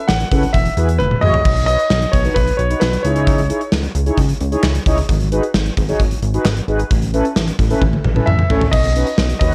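A punchy, up-front gated 80s drum kit with bright cymbals, handclaps, toms and two fills drives this bright, upbeat synth-pop fragment at 132 BPM, joined by a glossy, chorused synth bass with a plucky filter, mellow, brassy synth chords with a filter sweep, and an intimate concert grand piano melody, its action noise audible, that drops out at 3.7 seconds and returns at 8.3 seconds, all coloured by a light small-room reverb and the warbling pitch drift of worn cassette tape.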